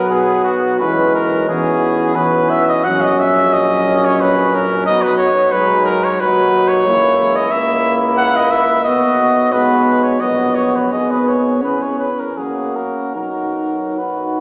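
Tender and lyrical, this hymn-like classical passage for brass band unfolds in 3/4 at a rubato pace drifting between 72 and 93 BPM in B major, cut from a longer piece. The cornet carries the melody up front from F#4 to F#5, its tone warm and punchy with a light vibrato. Beneath it the flugelhorn sings a second line with a vintage glow and its own gentle vibrato, while the euphonium adds warm accompaniment. A clear, present trombone sits further back in the accompaniment, and a tuba anchors the bass from G#1 to F#2 in the background. All five voices play throughout the 14.4 seconds, bathed in a wet church reverb with a long 2.8-second tail, moving through a progression that settles back on B at 13.1 seconds.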